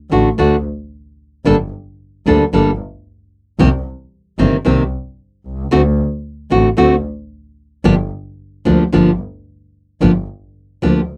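Melancholic and tense, this rubato tango fragment in G minor at 112 BPM sets an up-front, full-bodied, fingerpicked nylon-string guitar against a bright, focused bowed double bass played with vibrato, moving from D through Gmadd9, Cm7 and D7 to Gm7, all captured as a dry, close 1970s-style studio recording with light reverb.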